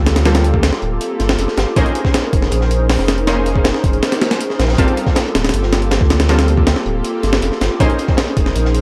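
Raw and frenetic, this drum and bass and jungle excerpt at 159 BPM drives an up-front, compressed sampler-style breakbeat kit with a thumpy kick and high-tuned snare over a crunchy, rolled-off acoustic kit in the background with high-passed hats and snare, while a deep, tube-saturated sub bass anchors Gm11 and Bbm11 chords held by an airy, breathy pad with chorus and 12-bit sampler grit, punctuated by bold, punchy orchestra-hit-like synth stabs trailing dub echo, in a dry, gritty hardware recording with light reverb.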